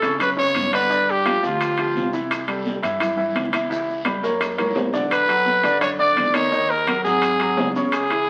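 A danceable salsa groove at 171 BPM in straight 4/4 drives this short, joyful cut from a longer piece, with congas, bongos, timbales, guiro and maracas filling out the percussion beneath a woody, thumpy pizzicato upright bass on gut strings. A growling trumpet leads up front, brilliant and gritty with light vibrato, playing its melody from 0.0 to 2.1 seconds and returning at 5.1 seconds after a drum fill. A clear, intimate grand piano carries the accompaniment throughout, polished and present with audible action noise, moving through chords such as G5, C6, C#m7b5, Bm7 and G#7sus4. The ringing metal-shell timbales sit close, the thick-skinned, high-tuned congas and grainy maracas rest in the background, the raspy guiro is very quiet and dry, and the tight bongos, entering at 0.2 seconds, sound distant in a large room. The whole is bathed in wet studio reverb and carries the crackle of a very old 78 rpm record.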